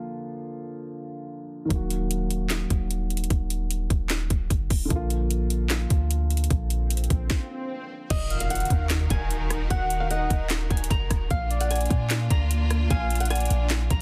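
A dense, heavily limited, dry mix carries this dark, menacing half-time trap clip from a longer piece, opening on a boxy, mellow grand piano behind a low-pass filter before a boomy 808-style bass and an electronic trap kit, with clipped kick, sharp snare, metallic hats, handclaps, rim clicks and crash, push up front at 1.7 seconds. An electronic swell and impact mark the turn at 8.1 seconds, where the piano drops out and a fingerpicked flamenco guitar, filtered and delayed, takes the melody over lush, bowed symphonic strings with vibrato. A round, detuned, octave-layered synth lead with chorus and delay adds a soft second line.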